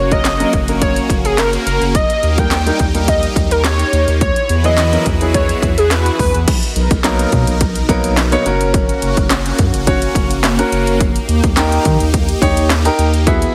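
Dance-pop with an upbeat, carefree mood, built on a punchy, overdriven house drum kit of kick, cracking snare, handclaps, hi-hat and crash, sitting up front alongside a clear baby grand piano. A lush, detuned supersaw pad with phaser and a deep, round analog bass both pump with sidechain, as does the piano. An airy, dreamy lead with chorus, digital delay, vibrato and portamento carries the melody until 6.3 s, all within a heavily compressed, radio-ready sound touched by light reverb.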